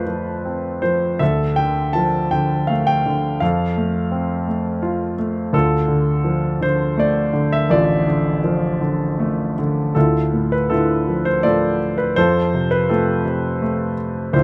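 A clear grand piano opens alone on an F chord, setting a reflective, wistful tone in this short classical passage for solo piano. The playing moves in a flexible three-beat metre, the time stretching and easing with a rubato feel as the harmony rocks between F and D minor. Around 10.0 seconds the music turns to a new section, colored by a D minor chord with an added ninth before settling back onto F. The piano spans a range from A1 to A5, its long sustain letting notes ring. The instrument sits up front and intimate, with the action noise of the keys audible beneath the tone, all held in a moderate studio reverb in a fragment cut from a longer piece.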